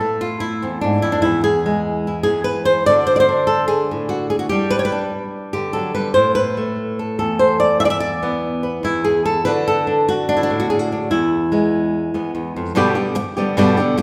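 A straight 4/4 pulse at 146 BPM drives this fiery, intense flamenco piece, a fragment cut from a longer work and carried by a single fingerpicked acoustic flamenco guitar tuned to A4 = 441 Hz, ranging from E2 to E5. The guitar sits up front with a bright tone and audible finger squeak, moving through Am, E, D, G, Asus2, E5, D and E before shifting to a new passage on G at 12.8 seconds. A wet recital hall reverb with a 1.5-second decay places the playing in a church or concert hall.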